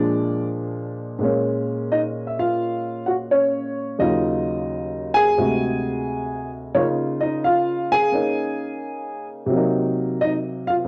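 Late-night and cool, this short cut from a longer solo jazz piece features a warm, natural baby grand piano placed up front, playing alone with a swung, rubato feel in 4/4 across a spread from D2 to Ab5, moving from Bb7 through Bbm7, Ebm9, D7#11 and Db69 to Cm7b5, with moderate spring reverb, a small room and the character of a home cassette recording.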